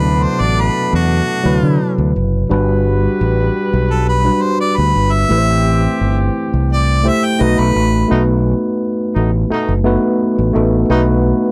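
At a steady 86 BPM in 4/4 with a straight feel, this lush 1970s-style soul passage, cut from a longer piece, moves with a smooth, bittersweet mood over chords of D13, Gmaj7, Am7 and B7. A clear, pop-style harmonica carries the melody as an up-front solo from the start until 8.1 seconds, when the music shifts into a new section. Beneath it, a worn, slightly out-of-tune tine electric piano plays the accompaniment with light overdrive, sitting close and direct, and continues to the end at 11.5 seconds. An overdriven fingered electric bass, amped and up front, anchors the low end with a warm, electric tone. A horn section adds stabs with light vibrato, sounding distant and roomy behind the other parts. The overall sound is dry and close, like a 1970s studio recording with little reverb.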